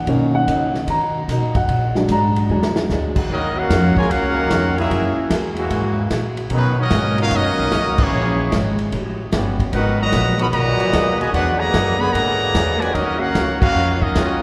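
This big band swing excerpt in Eb minor opens with an intimate concert grand piano, up front with deep bass, long sustain and audible action noise, under a sultry, brassy mood at 149 BPM. An upright bass, a vintage drum kit and a very quiet picked archtop guitar accompany it from the first moments. The bass has a woody, thumpy pizzicato sound, and the drums are smooth with dark cymbals, a medium-tuned snare and a punchy kick, capped by a short fill before the horns arrive. At 3.3 seconds a bright, present trumpet section takes the melody over a trombone section with light vibrato and soft attack playing a second line, and at 4.4 seconds a clear, tight, very quiet trombone section adds sustained chords. The full band hits an accent at 7.9 seconds and again near the end, as rich harmony moves through ninth, thirteenth and altered chords. A long church reverb gives the whole ensemble a spacious, hall-like glow.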